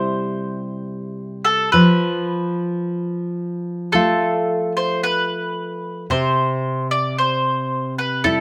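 Rubato and unhurried in 4/4, this serene, warm romantic duo pairs a round, picked mandolin melody on double strings with a full-bodied, fingerpicked nylon-string guitar accompaniment, both up front in light reverb, moving from C to F before the harmony falls away at 6.1 seconds.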